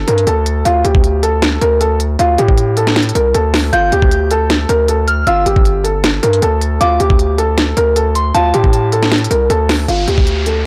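A blown-out, overdriven and dry mix carries this menacing, hard-hitting trap excerpt in a half-time feel, built on a felt-muted upright piano melody that sounds soft, intimate and vintage through a low-pass filter and digital delay, over an aggressive, saturated 808-style bass with a noise layer and a knocking, crisp trap kit with a sharp snare, all three up front. A pure, gentle FM synth bell with chorus and delay floats high above from 3.7 to 8.7 seconds, and an electronic downlifter closes the passage at 9.9 seconds as the chords move between Gsus2 and D5.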